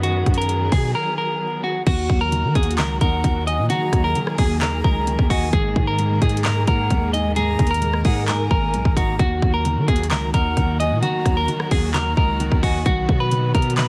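Set in a small, close room with a dense, heavily limited master and a layer of vinyl crackle, this eerie, brooding trap excerpt in Eb minor moves at 131 BPM with a half-time feel, opening on a clean, picked electric guitar melody, bowed strings with lush vibrato, a growling, buzzy 808-style bass, and an up-front trap kit of hard-clipped kick, metallic hi-hats, handclaps, rim clicks and crash, gritty with vintage 12-bit sampler character. After a short break from 0.9 to 1.9 seconds, a worn, boxy baby grand piano with audible action noise joins in the background, and at 2.8 seconds a breathy, unsteady concert flute adds a high second line through tape echo. The chords move from B to Ebm and Absus2 before returning to Ebm and B.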